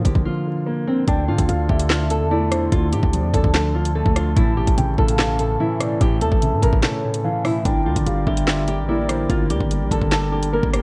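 A dark, fingerpicked nylon-string guitar carries the melody from the first moment, filtered and trailed by delay, over a dusky, boxy grand piano, a punchy 808-style bass and an overdriven drill kit that sits up front with a knocking kick, woody snare, bright hats, rim clicks and handclaps. This is a menacing, ominous drill cut from a longer hip hop piece, moving at 146 BPM in 4/4 with a half-time feel in D minor. A break opens almost at once, and at 1.1 seconds a velvety, wave-folded synth lead with chorus, vibrato and delay slips in as a soft second line in the background, joined by a reedy, vintage-toned accordion holding sustained chords far back in the mix. The harmony moves from Bb to Dm, then A and Gm, with the heavy sine-based bass giving each hit a fast, decaying thump. Another break arrives at 6.8 seconds, and vinyl crackle and studio ambience lend the whole track a hazy, rounded top end.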